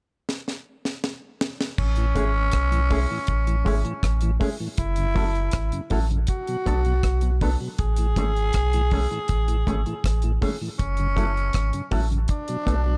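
A raspy, growling tenor saxophone with tape echo carries the second line in this warm, uplifting roots reggae excerpt at 80 BPM in A major, entering at 1.8 seconds after a fill on the dry, up-front drum kit with its high-tuned snare and tight kick, joined by a round sine sub bass, a mellow tonewheel organ with key click turning through a slow rotary speaker, and a dark, clean electric guitar through an envelope filter and tape echo, all moving over Amaj7, F#m7 and Bm7 in a studio ambience.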